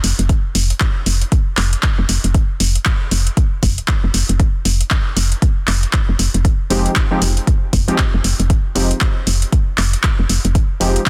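A dense, heavily limited modern master with digital ambience frames this moody deep house excerpt, its sixteenths carrying a gentle swing. An up-front, woody FM bass with sidechain pumping anchors the groove from the start, joined by a tape-warm drum kit of handclaps and metallic hi-hats and, at 0.3 seconds, a deep, layered electronic kick. At 6.7 seconds, warm, detuned sawtooth analog keys enter as stabs, treated with chorus, delay, sidechain pumping and a filter sweep.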